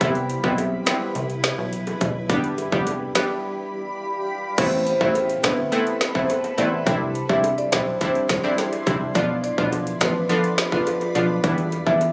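Dancehall with a bouncy, hypnotic mood, cut from a longer piece and heard as if caught on a phone in a club, where an overdriven island pop drum kit with a tight kick and woody snare sits up front beside a bright, chorused analog pluck and a punchy, nasal plucky analog bass, while a cloudy granular pad pumps in the background, very quiet high-tuned bongos join at 0.6 seconds, and a marimba with medium mallets carries the delayed melody from 4.6 seconds after a short break.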